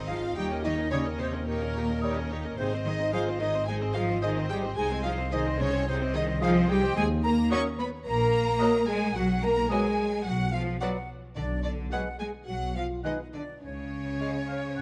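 Playful and mischievous, this cinematic orchestral passage in Ab major moves at 109 BPM in a straight 4/4, cut from a longer piece and lasting about 14.8 seconds. A lush violin section carries the melody in the background, while a second violin section with a soft attack adds a richer line, joined from 0.1 seconds by an airy, bright silver concert flute with lifted highs. Mellow French horns hold tight, present sustained chords, and a smooth, even viola section fills in the accompaniment alongside a distant, roomy bassoon that enters at 0.9 seconds, together with a solo oboe and a very quiet clarinet tracing their own second lines. Underneath, a focused, close cello section and a dark, up-front double bass section with portamento anchor the bass, all of the strings bowed with vibrato. The harmony wanders from Eb7 through Ab, D#m and B before a darker turn to Bm and G#m7b5/B, settling on C#5 at 13.6 seconds, all bathed in a moderate scoring-stage reverb.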